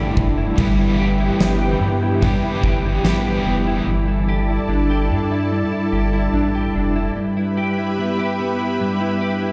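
Dream pop at 73 BPM in 4/4, blissful and floating, built on Dsus2 and Em/G chords, where a dark, compressed clean electric guitar picks up-front arpeggios through ensemble chorus and delay over a warm, detuned sawtooth pad with slow attack and chorus, a round, deep analog bass sits under them until 7.1 seconds, a bright, double-tracked overdriven guitar with tremolo and lush chorus plays until 4.4 seconds, and a huge acoustic drum kit with punchy kick, fat snare, bright ride cymbal and tambourine plays from 0.2 to 3.2 seconds, all played on a big sound system in a bare room with large studio reverb in this short excerpt cut from a longer piece.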